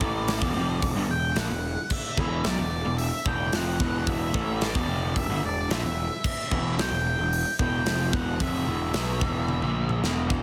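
Quiet-loud alternative rock at 111 BPM in 4/4, this angsty, brooding excerpt rides a single E5 chord, with a raw garage guitar, overdriven and double-tracked, grinding out a riff up front over a growly fuzz bass and a big acoustic rock kit with a punchy kick, medium-tuned snare, bright cymbals and toms. A dark octave-fuzz lead guitar carries the melody between D5 and G5 through distortion and slapback echo until 10.0 seconds, and the drums close with a fill from 9.5 seconds. The mix sits in light reverb and small room ambience, squeezed into a heavily compressed, radio-style sound.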